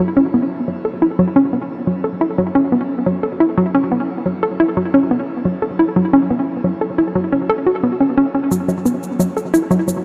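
Mysterious and expansive, this ambient, sequencer-driven space music moves at 88 BPM in a straight 4/4, set in F# minor and tuned slightly sharp, with A4 at 441 Hz. A hollow, bouncy square-wave pluck carries the riff for the whole 10 seconds, ranging from F#3 to A4 and sitting up front in the mix. Its detuned, wave-folded tone has a fast attack and short decay, thickened by a sub octave and a noise layer, and chorus, tape echo and shimmer reverb give it a mellow halo. Electronic, analog-sounding shaker and woodblock slip in quietly at 8.5 seconds, touched with their own tape echo. A huge, wet reverb with a 7.5-second tail surrounds the whole scene, making this short cut from a longer piece feel vast and drifting.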